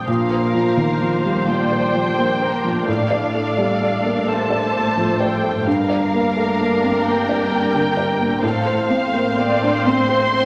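A slow, rubato 6/8 pulse at 43 BPM carries this tender, uplifting cinematic film-score excerpt in Bb major, moving through Bbadd9, Dm/A, Gm7 and F/A. A felt-muted upright piano sits up front, soft and intimate with audible action noise, while a distant violin section sings the lush, expressive melody with vibrato and portamento, and a very quiet concert harp rings out fingerpicked arpeggios. A darker second violin line, a rich viola section, and cellos and double basses in the background fill out the bowed ensemble, all bathed in a generous scoring-stage reverb.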